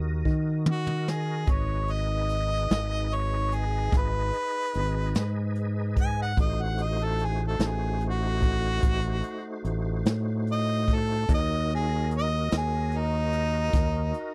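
Slow blues in Eb minor at 49 BPM in 12/8, brooding and soulful, heard as a short cut from a longer piece. A clear, up-front harmonica carries a jazz-style solo full of vibrato and scooped notes from 0.7 seconds. Beneath it sit a growly fingered electric bass, a brushed jazz kit with a boomy kick that opens with a fill at 0.3 seconds, and a lightly overdriven tonewheel organ set softly behind them, holding sustained chords through a slow rotary speaker with chorus vibrato and key click, as the harmony moves from Ebm to Abm, through Adim7 and back to Ebm in a dry, close 1970s-style studio sound.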